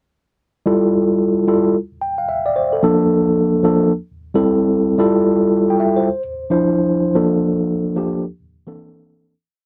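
R&B piece at 111 BPM in 4/4, with a slick, bouncy mood from a 16th-note swing. A mellow tine electric piano plays alone from 0.7 to 9.3 seconds, sitting up front with a clean tone heard through its built-in speakers. It plays syncopated chord stabs in drop-2 voicings, adding short fills, and moves through Fmaj9, a brief break at 1.7 seconds, Bbmaj7, Am7, Fmaj9, Dm9, Bbmaj7 and a closing C13. Light reverb surrounds the keys in a dry, close 1970s-style studio sound. The recording fades out from 7.2 seconds to the end.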